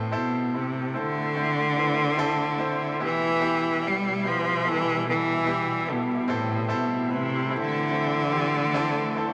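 A bowed solo cello sings an emotional, melancholic pop melody up front with smooth vibrato and a slapback echo over a polished baby grand piano at 73 BPM in A minor, moving from Am to Em and back, while an ethereal, detuned pad with octave-up shimmer, chorus and its own reverb fades in at 0.7 s beneath them, all set in a moderate plate reverb in this short fragment of a longer piece.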